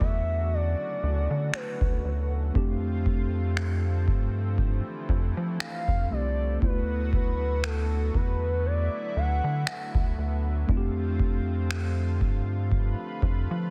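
Up front, a booming analog drum machine with a deep, tape-touched kick and finger snaps sets a slow, dreamy pulse at 59 BPM, its sound carrying vintage 12-bit sampler grit and the bloom of a large room. This short contemporary R&B excerpt in D major sits in a relaxed 4/4 with a light swing on the sixteenths, moving between D6 and F6 chords in a romantic haze. A rubbery square-wave bass, dark and bouncy with a plucked filter attack, sits prominently beneath, while a mellow tine electric piano plays clean accompaniment that sounds as if heard through its own built-in speakers. A lush, airy unison pad holds sustained chords thickened by chorus, and a smooth, gliding portamento lead with vibrato, chorus and delay carries the melody until about 10.2 seconds. The mix is dense and heavily limited, wrapped in digital ambience.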